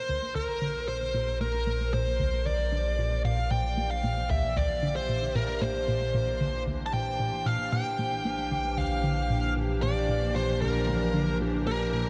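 A picked, distorted electric lead guitar carries a bluesy melody up front through shimmer reverb and tape echo, while a tight, detuned sawtooth sequencer riff drives beneath it with chorus and phaser; a bright, morphing wavetable pad then fades in from 0.3 seconds on a Bbadd9 chord, and a mellow, wave-folded analog drone settles on Bb1 at 0.5 seconds, the whole cosmic, luminous fragment of sequencer-driven space music in Bb lydian at 114 BPM held inside a huge ambient reverb.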